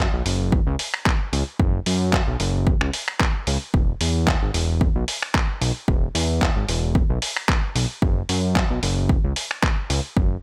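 A lightly swung 16th-note groove at 112 BPM in 4/4 drives this sunny, feel-good nu-disco fragment, where a punchy, overdriven electronic kick sits up front beside a gritty, compressed sampler-style soul kit of finger snaps, handclaps and hi-hat, while a fat, detuned sawtooth analog bass with a filter sweep and sustained notes fills the low end from E1 to F#2, all set in a digital ambience.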